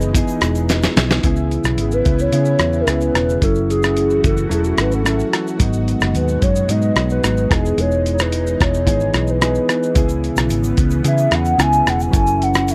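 A dry, close 1970s-style studio sound frames this dreamy, sunny indie and bedroom pop piece at 110 BPM in a straight 4/4, tuned to A4 = 444 Hz and cut from a longer work. A hollow, woody clarinet-like synth lead carries a soft solo from 1.2 seconds over Emaj7, C#m7, F#m7 and G#m7 chords, treated with analog chorus and tape echo. It is supported by a mellow electric guitar with chorus and warbly pitch drift, a lush detuned unison pad with phaser in the background, and a round, punchy foam-muted electric bass. A gritty, up-front sampler-style drum kit plays a drum fill at 0.7 seconds, and a grainy tube shaker sits very quiet at the edges of the passage.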